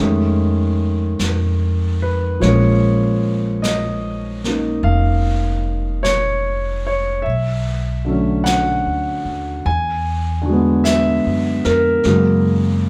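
A swung 4/4 pulse at 50 BPM carries this tender, intimate jazz ballad excerpt, where an up-front concert grand piano with deep bass comps through F7alt, A#m7, Bm7 and E9 before settling on F#, a woody, growly pizzicato upright bass plays beneath it, and a vintage brush kit with a medium-tuned snare and rolled-off top enters at 1.2 seconds, all sounding like a band playing live together in a large studio room with moderate reverb.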